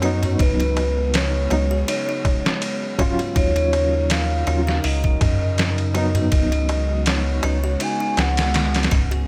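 This melancholic, brooding trip hop excerpt opens with everything at once: a compressed, pitched-down, gritty sampler-style drum kit with a thumpy kick and medium-tuned snare sits up front beside a deep, round dub sub bass, while a very quiet clay darbuka played with soft hands adds dry texture. Over a light swing, an overdriven, reedy electric piano with fast tremolo comps through a combo amp until 7.6 s, while a warbling, nostalgic tape-like pad sustains chords and a delicate, slightly out-of-tune music box tinkles, both in the background. A pure, breathy sine lead glides with vibrato and portamento through lush chorus and tape echo, carrying the melody until 8.9 s over chords moving from Db7sus4 to Ebm7 and back.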